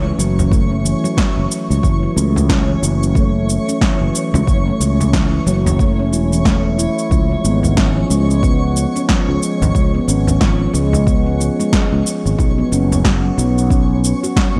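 A swung sixteenth-note groove from an overdriven electronic kick and a punchy, gated electronic snare and cabasa carries this meditative organic downtempo excerpt, with a deep frame drum played with hard hands sitting in the background from 0.4 to 13.0 seconds. Up front, a ringing stainless-steel handpan plays arpeggios through a low-pass filter and delay, while a growly fretless electric bass pumps under sidechain compression across F#m7, C#7 and Bsus2. High above, a twinkling granular FM texture adds sparkling octave-up shimmer with lush chorus, all framed by light reverb and a bright 1980s-style digital production.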